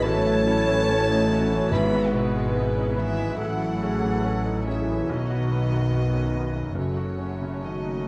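Cinematic and rubato, this longing, bittersweet fragment sets a close, sul tasto chamber violin melody over a second violin line, a mellow distant clarinet, a pure flute section and a background grand piano with audible action noise, while the symphonic violas float far off, a French horn section holds sustained chords, a dark cello section and an up-front double bass section anchor the bass, and a very quiet timpani sounds from 1.7 to 2.9 seconds, all bathed in a wet scoring-stage reverb.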